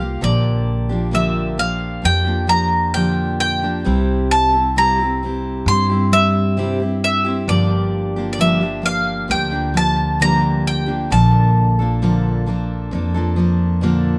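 Hopeful and gentle, this short acoustic folk excerpt moves at an unhurried, straight 4/4 pulse over a chord sequence of Bb6, C, Gm7 and Bbmaj7. A bright bowl-back mandolin carries the melody up front with its doubled strings and a touch of slapback echo, stopping at 13.8 seconds, while a full-bodied picked steel-string guitar accompanies just as close to the ear. A woody, dark pizzicato upright bass anchors the low end, all heard dry in an open-air setting with little reverb.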